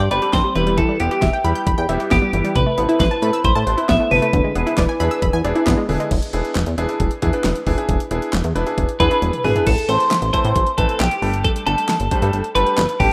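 Synth-pop at 135 BPM with a cool, nocturnal mood, cut from a longer piece, where a twangy, up-front twelve-string electric guitar carries the melody with vibrato and slapback echo, drops out at 5.6 seconds and returns at 9.0, while a round, detuned analog pluck spins chorused arpeggios until 6.1 seconds over a glossy, pulse-width-modulated synth bass, an intimate grand piano with audible action noise, and an overdriven pop drum kit with a knocking kick and fat snare that fills at 9.2 seconds, all set in a lush hall reverb in a rough demo mix.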